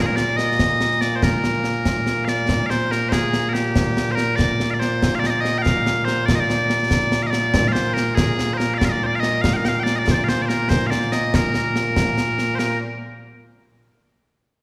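A wet, reverberant acoustic, like a church or concert hall, surrounds this short cut from a longer piece of Scottish traditional pipe music. The mood is ceremonial and proud, moving at 95 beats per minute in a straight 6/8 lilt and set in B-flat mixolydian. Loud bagpipes carry the melody from the first moment, a piercing, continuous solo voice placed up front that spans from Bb2 to G5. At 0.2 seconds a concert snare drum and concert bass drum enter, also close and acoustic, with bright cymbals ringing over a small-room drum sound. The pipes and drums play together until 12.8 seconds.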